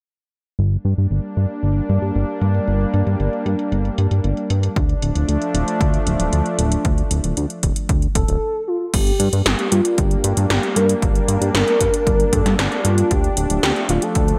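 Driving and cinematic, this synthwave passage at 115 BPM in G minor opens at 0.6 seconds with a fat, detuned sawtooth bass carrying a filter sweep and sidechain pumping alongside 1980s-style electronic drums with a gated snare, metallic low-passed hats and crashes, joined by a smooth, warbling chorused pad, a punchy electronic kick from 4.8 seconds, and a velvety, gliding synth lead with vibrato and delay from 8.2 seconds, all set in a bright digital production with moderate plate reverb.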